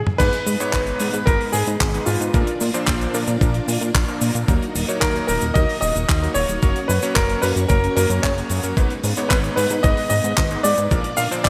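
A clear, worn grand piano carries the melody through delay and shimmer reverb in this nostalgic, bittersweet italo disco excerpt, over a thumpy, sampler-style electronic kick, a dry, damped 70s drum kit with cabasa, handclaps, hi-hat, toms and crash cymbal under gated reverb, a glossy, saturated chorused synth bass, lush string machine chords with ensemble chorus, and background stabs from a clangy electric grand piano with vintage 12-bit sampler grit, set in a bright 1980s-style digital production with a moderate hall reverb.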